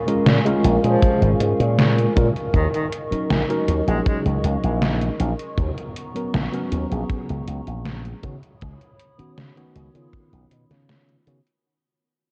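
Melancholic and woozy, this vaporwave excerpt at 79 BPM drifts through Bbm7, Ebm7, Abm11 and Db9sus4 under a fade-out, with a warbling, detuned, wave-folded pad holding chords, a clean tine electric piano through a combo amp, an up-front punchy slap bass with an envelope filter, an overdriven, sampler-style 8-bit drum machine playing hi-hat and snare with gated reverb, a tight big-room kick with a rolled-off top from 1.0 seconds, and a distant tenor saxophone with vibrato and tape echo singing briefly from 0.8 to 4.2 seconds, all dressed in cassette-tape grit.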